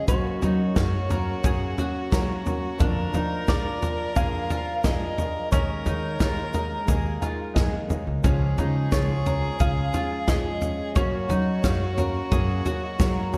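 Indie folk with an anthemic, uplifting mood and a building arrangement, moving at 88 BPM in a straight 4/4 through a short passage cut from a longer piece. An electric guitar through a small old amp carries the melody until 12.3 seconds, its tone slightly broken-up, lo-fi and compressed, colored by tremolo, slapback echo and analog delay. A clear fiddle with light vibrato and a nasal, earthy edge plays a second line, while a bowl-back mandolin adds picked arpeggios on double strings and a picked steel-string acoustic guitar sits in the background. A dark, mellow upright piano accompanies and steps forward with fills at 6.9 and 12.3 seconds, and the progression moves from Gb through Bb/F, Ebsus4 and Db before returning to Gb. Underneath, a woody pizzicato upright bass and an up-front natural country drum kit with a punchy kick, medium-tuned snare and toms drive the groove, with a grainy egg shaker tucked behind, all set in light studio reverb.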